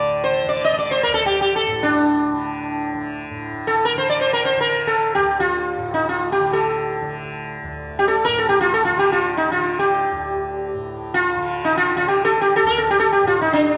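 In free time, this excerpt of Hindustani classical music unfolds a solemn, introspective reading of raga bhairavi on D, tuned slightly below standard pitch at A4 = 439 Hz. Up front, a round, buzzing sitar carries the melody between D4 and Eb5, its plucked notes ringing with shimmering sympathetic strings, while a softly plucked tanpura holds a low drone from D2 to D3 well beneath it. The two parts sound together throughout the 13.8 seconds, wrapped in the wet reverb of a recital hall.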